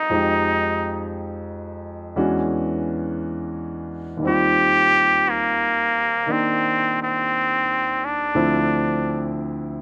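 A nasal, straight-muted trumpet sings a smoky, wistful jazz melody with vibrato and scooped notes over a slow 58 BPM swing, while a clear, deep-bassed concert grand piano with slapback echo accompanies through Fm9, E13, Eb6 and Dm7 chords, both up front in a dry, open-air sound in this brief cut from a longer piece.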